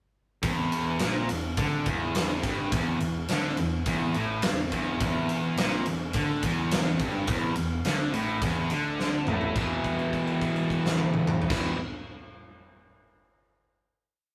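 A straight, steady four-to-the-bar pulse drives this short, complete hard rock piece, heavy and menacing from the moment all three parts come in together at 0.4 seconds. Up front, a sludgy, overdriven electric guitar, picked and double-tracked with a warm tone, grinds out a low single-note riff. Beneath it, a fuzzed, bright electric bass sits in the background, pushing punchy eighth notes and doubling the guitar riff. The huge acoustic drum kit sounds natural and big-room, with a fat snare, a punchy kick, crash and ride cymbals and a big rock groove, and a drum fill at 9.0 seconds leads to a final E5 chord at 9.6 seconds that rings out as a held note. The rough rehearsal-room sound carries moderate reverb and a faint mains hum.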